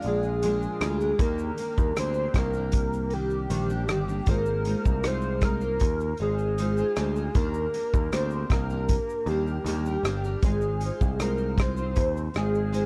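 A straight 4/4 groove at 78 BPM from a raw garage drum kit, with punchy kick, hi-hat, rim click and shaker under a rolled-off top, carries this sunny, dreamy indie and bedroom pop excerpt in Eb major, where a round, up-front picked electric bass and a full-bodied jumbo steel-string acoustic guitar, picked with audible finger squeak and given analog chorus and a warbly pitch drift, drift between Ebmaj7 and Ab6 while a soft, octave-layered synth lead, a detuned, wave-folded triangle and sine tone with a sub octave, vibrato, chorus and tape echo, sings the melody from 0.1 seconds, all in a dry, close 1970s-style studio sound.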